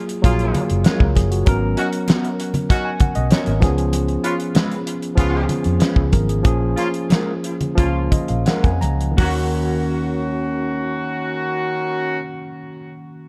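A straight 4/4 groove at 83-98 BPM carries this short cut from a lush 1970s-style soul piece in Eb minor, easing into a slowdown from 3.9 to 9.2 seconds. A damped drum kit sits up front with a fat, dry snare, tight kick and hi-hat. Hard-handed, thick-skinned congas add very quiet, close percussion, and a foam-muted fingered electric bass supplies a round, dark low end. A worn, slightly out-of-tune tine electric piano carries the accompaniment through Gbmaj9, Abm11, Db7 and Bbm7 chords, and steps forward with a fill from 7.8 to 9.2 seconds before the harmony settles on Ebm7. A distant, roomy horn section punctuates with stabs trailed by analog delay, while a bright, twangy electric guitar through a small old amp plays a picked, slightly broken-up riff bathed in lush chorus. The dark, warm production with light studio reverb gives the music a cinematic, bittersweet mood.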